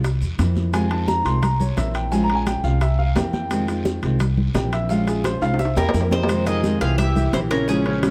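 A straight 4/4 pulse at 173 BPM drives this sultry, nostalgic Cuban son and guajira excerpt, with woody, thumpy upright bass up front, played pizzicato on gut strings, under close, dry timbales with a ringing metal shell, while tight, high-tuned bongos, damped congas struck with soft hands, a raspy band-limited guiro and grainy, distant maracas sit in the background. A fingerpicked nylon-string guitar adds a full-bodied classical accompaniment with audible finger squeak, circling between C7, Fm7 and Bbm7. A clear concert grand piano with deep bass enters at 0.7 seconds with arpeggios and takes a solo turn until 6.3 seconds, as a drum fill from 5.2 seconds leads into the next section. At 5.8 seconds a picked Cuban tres with metallic, partly octave-doubled strings takes up the melody, joined by a bright, present trumpet in the background playing a second line with scooped notes. A moderate plate reverb gives the parts a lingering sense of space.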